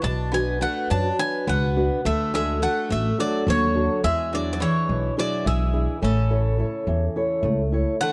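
Greek folk in a brisk 7/8 at 211 BPM (eighths), hopeful in mood and set in A major, this short cut moves through Bm, D, E7 and A. A bright, metallic bouzouki carries the melody up front with its double strings, some of them octave-doubled. A second bouzouki plays a lower line beneath it, while a fingerpicked old ladder-braced acoustic guitar gives boxy, dark accompaniment on old strings, and a pizzicato upright bass with steel strings adds woody low end until 7.8 seconds, all within a warm production with light reverb.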